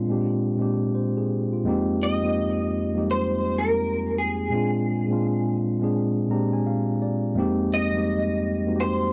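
A mellow, clean tine electric piano heard through its built-in speakers opens this late-night, introspective R&B passage cut from a longer piece, accompanying over Bb9 and Fm11 chords in F dorian at 84 BPM with a swung sixteenth-note feel and slightly flat tuning (A4 = 436 Hz); at 2.0 seconds a slightly broken-up, lo-fi, compressed electric guitar with ensemble chorus enters up front with a fingered melody, while the piano adds a fill from 5.9 to 7.4 seconds, all captured in a dry, close 1970s-style studio sound with light reverb.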